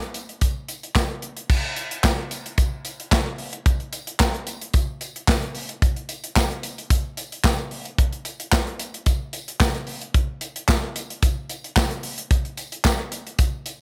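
Funk at 111 BPM in a straight 4/4, with a slick, late-night mood, this excerpt from a longer piece is carried by a punchy, up-front acoustic studio drum kit of kick, medium-tuned snare, hi-hat, crash cymbal and handclaps, its cymbals bright and its tone mid-forward. A jingly tambourine joins at 0.2 s, sitting close, dry and very quiet beneath the kit. A light reverb frames the sound, and the groove moves into a new section at 1.5 s that runs to the end at 13.8 s.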